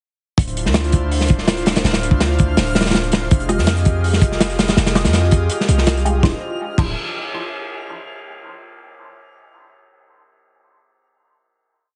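A crunchy, heavily chopped breakbeat kit with a punchy kick and dark cymbals sits up front in this raw, nostalgic drum and bass piece at 164 BPM in D minor, joined by a deep, boomy 808-style dub bass line, an airy, breathy pad holding Dm9 and Fm9 chords, a reversed, dreamy swelling texture on a high F6 from 1.7 seconds, and muted, phased dub chord stabs echoing sparsely from 3.5 seconds, all under a heavily compressed, radio-like sound before a final Dm9 chord at 6.2 seconds.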